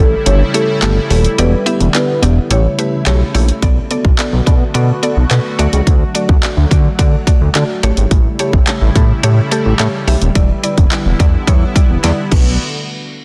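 A glossy, retro chorused synth bass sits up front in this confident, bittersweet dance-pop excerpt, built from pulse-wave and sawtooth tones with a plucky filter and a sidechain pump at a straight 107 BPM in B minor. A marimba with soft mallets carries a mellow, woody melody at the outset but falls away at 3.3 seconds, leaving the bright, FM-based mallet-like synth pluck to carry the accompaniment with its percussive, decaying notes and a touch of noise. Underneath, an evolving, full-bodied pad of detuned sawtooths with a sub octave sustains the chords through a slow filter swell, breathing with the same sidechain pumping. The layered electronic pop drum kit enters at 0.3 seconds with a punchy kick, fat snare, handclaps, hi-hat and crash; the kick briefly drops out early on, and a fill arrives at 12.0 seconds. The harmony alternates between A7 and Em7, settles on Bm7 and D, then returns through A7 and Em7 to Bm7, all set in light reverb and a dense, heavily limited modern master.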